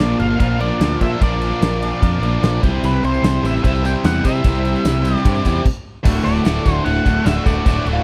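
A dark octave-fuzz lead guitar with slapback echo carries the melody through this swaggering, confident classic rock excerpt, over a crunchy phaser-tinged guitar riff, a tight distorted second riff guitar, a modern picked electric bass with a direct tone and a punchy gated 80s drum kit with bright cymbals, while a very quiet jingly tambourine joins early on; during a brief stop beginning at 5.7 s, a gritty rotary-speaker tonewheel organ enters at 6.0 s, and an overdriven slide guitar slips in at 7.9 s just before the cut.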